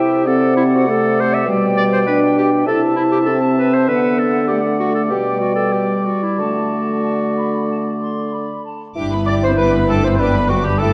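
This is a short cut from a quick, graceful classical-period orchestral movement in G major, moving at roughly 90-101 BPM in 4/4 with a lively yet rubato feel. It opens on woodwinds and horns alone: a bright, present clarinet, a hollow, airy flute group and a mellow, roomy cor anglais weave second lines above a dark bassoon accompaniment, while a punchy French horn section holds sustained chords. The harmony moves through D7/C, G/B, Am/C and D before settling on G at 9.0 seconds. At that point the strings enter, with a focused violin section carrying a high melody and a second violin line in the background. A very quiet, distant viola section adds accompaniment, and a double bass and a lush cello section anchor the bass on G. Concert hall reverb gives the whole a wet, dark production.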